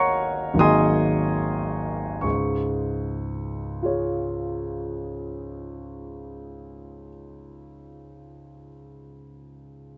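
Hazy and luminous, this slow, rubato impressionist solo piano excerpt gives an up-front grand piano a warm, open tone and long sustain across its range, easing back over an Ab11 chord before settling onto Db at 2.2 s to begin a new section, all softened by moderate studio reverb and gently rolled-off highs.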